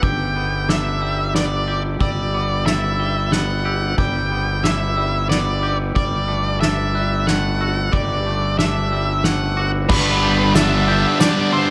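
Soaring and euphoric, this post-rock excerpt in 3/4 is led by an up-front, dark octave-fuzz guitar melody with analog delay, over a clean, twangy electric guitar's arpeggios, a band-limited, bell-like glockenspiel played with hard plastic mallets, and a punchy fuzz bass holding a low G. A distant, roomy drum kit struck with soft mallets supports the parts under light studio reverb as the harmony moves from G to D/G. At 9.9 seconds, two bright, overdriven electric guitars join in the background with picked riffs as the chord returns to G.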